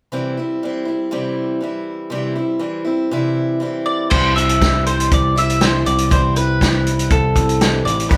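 Folk rock and heartland rock at 120 BPM in 4/4 with a hopeful mood: a boxy, up-front parlour steel-string acoustic guitar picks the accompaniment over a C chord from the start. A bright, woody mandolin takes the melody on its double strings from 3.9 seconds, and at 4.1 seconds a punchy picked electric bass and a vintage drum kit join, the kit bringing dark cymbals, a medium-tuned snare and a rolled-off top, as the band plays live in one room with a moderate large studio reverb.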